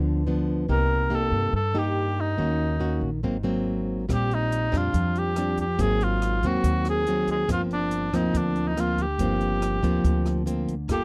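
A cor anglais carries the melody up front from 0.7 seconds, its classical tone shaded with light vibrato as it moves between D4 and Bb4. This is a wistful, smooth bossa nova in G minor at 141 BPM in a straight 4/4, taken from a longer piece. Beneath it, a fingerpicked nylon-string guitar plays classical-style accompaniment from the start, with a woody, thumpy upright bass played pizzicato on gut strings. A compact cocktail drum kit joins at 4.1 seconds with hi-hat, rim click and a tight kick. The harmony moves from Cm7 through Ebm7, Ab9 and a Bb6/9 before settling on Gm7. The sound is dry and close, like a 1970s studio recording, with warm tones and little reverb.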